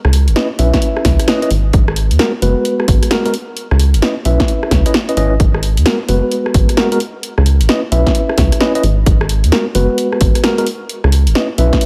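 A swung two-step garage groove at 131 BPM drives this moody, soulful excerpt, where a rubbery, hollow square bass sits up front from the start beside a punchy, overdriven analog drum machine of hi-hat, rim click and snare, an overdriven electronic kick joins at 0.7 seconds, and mellow tine electric piano stabs with dub echo float over shifting C#m9 and G#m9 chords in a digital ambience.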